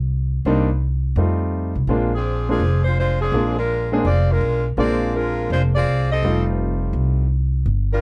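Dark, lightly reverberant production frames this joyful, brassy big band swing excerpt, where a woody, growly upright bass sits up front from the start, a bright concert grand piano comps from 0.5 seconds, and a tight saxophone section with a soft attack and light vibrato takes the melody from 2.1 seconds over a Cm7, F9, Bb9, F9 progression.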